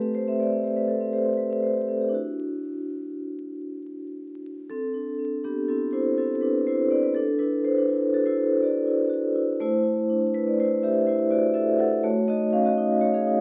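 Close, detailed microphones catch every ringing note in a moderate recital-hall reverb, while a faint vinyl crackle sits under the sound. This contemporary classical piece for solo vibraphone lasts just over 13 seconds, cut from a longer work, and its mood is playful and warm. Set in C lydian and an uneven 5/4 at 122 BPM, it moves with a loose, rubato feel. The vibraphone, played with medium mallets from A3 up to F#5, sounds up front and metallic yet dark and smooth, colored by a slow motor vibrato. The harmony drifts from Am7 to Dadd9, and a new passage begins at 4.7 seconds on C69 before passing through Am and settling on F#sus2/A at 12.0 seconds.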